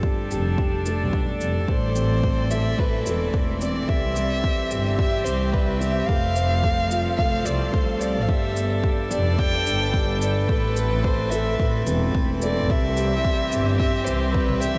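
Soaked in a huge, dreamy reverb, this intimate, hypnotic piano and strings electronica moves at 109 BPM in A minor. A felt-muted upright piano repeats a soft, mellow riff through subtle chorus and diffuse ambient delay, while a string quartet holds floating, sul tasto chords and a bowed chamber double bass section carries the bass with sidechain pumping. An overdriven electronic kick drum and layered electronic shaker and toms in small room ambience drive the pulse, and from 1.7 s a dark, airy solo violin sings the melody through its own diffuse delay over chords like Gadd9, Amadd9 and Cmaj7.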